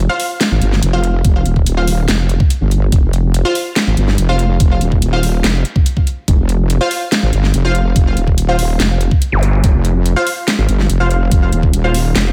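Chaotic and heavy, this half-time wobble dubstep excerpt is built on a saturated, detuned sawtooth wobble bass with chorus and overdrive that sits up front, joined by a knocking, tape-toned electronic kick at 1.2 seconds and a layered kit with a huge snare and metallic hats in a small room. Bold, punchy orchestra-hit-like synth stabs cut through brightly, their unison saw layers, noise and moving notch carried by built-in reverb and delay. A brief electronic zap flashes by at 9.3 seconds in an otherwise dry mix.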